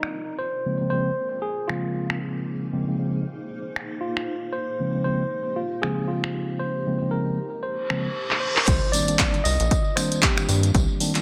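A rubbery, nasal square bass stands out when it drops in at 8.7 seconds alongside an overdriven electronic kick and a jingly tambourine with tape echo, shifting this moody, hypnotic deep house excerpt at 116 BPM from Bbm9 to Cm9, just after a reverse cymbal and a drum fill, with an electronic impact landing on the drop. Before that, a clean tine electric piano carries the melody through tape echo over a dry, punchy analog drum machine of finger snaps, handclaps, low-passed hi-hat and crash cymbal with a swung 16th feel. A mellow electric piano adds gritty, low-passed stabs from 0.7 seconds, and a cloudy granular pad drifts underneath, both pumping with sidechain, in an echo-heavy mix with light reverb.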